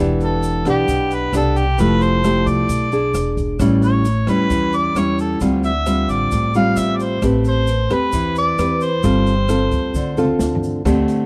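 A straight 4/4 bossa nova groove at 132 BPM sets a relaxed, breezy mood in this short cut from a longer piece. Up front, a full-bodied, fingerpicked classical nylon-string guitar carries the accompaniment through chords such as Em7, Fmaj9, Dm11 and Am9, while a woody pizzicato upright bass with steel strings sits beneath it. A mellow harmonica takes the jazz-style solo melody, its vintage tone marked by light vibrato and scooped notes and touched with tape echo. In the background, a dark, smooth acoustic drum kit with dark cymbals, a boomy kick and a rolled-off top plays from a small room and adds a fill at 9.9 seconds, while a grainy tube shaker sounds distant in a large room. The whole recording is dry and close in a 1970s studio style, with a faint mains hum underneath.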